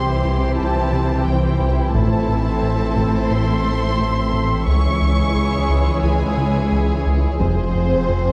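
Tense and futuristic, this fragment of a cinematic hybrid orchestral and electronic film score sets lush bowed violins, one section carrying an expressive vibrato melody over a smooth second line, against a dark viola section with portamento in the background and warm cellos holding the bass. Beneath them a deep, round analog bass riff and a thick, saturated sine sub bass underpin a nasal, detuned sawtooth pad with ring modulation and chorus that slowly evolves through sustained chords. A very quiet, band-limited taiko ensemble struck with hard sticks enters at 1.9 s, all within a moderate scoring-stage reverb and a dark production.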